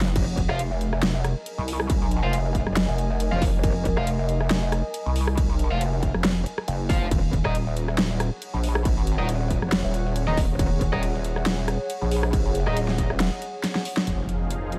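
A lo-fi, tape-tinged haze hangs over this heavy, menacing wobble dubstep fragment, cut from a longer piece and set in a swung, half-time 4/4 feel. Two basses sit up front. One is a metallic, aggressive FM wobble bass, saturated and compressed with chorus and overdrive. The other is a detuned, pulsing pluck wobble bass, heavy and chorused, that carries the low end until 13.3 seconds. A produced dubstep kit with a huge snare, bright hats, rim clicks and crash cymbals plays in a small room alongside a distorted, layered electronic kick, while double-tracked, overdriven electric guitar stabs with digital delay cut through in a bright register. Above them a warbling, nostalgic pad drifts with phaser, chorus and sidechain pumping over the harmony, which moves from Fm to Ebm. After a drum fill and a band accent at 14.0 seconds, a lush, airy supersaw pad, heard only briefly at the very start, returns alongside a background impact on an Fm7 chord at 14.1 seconds.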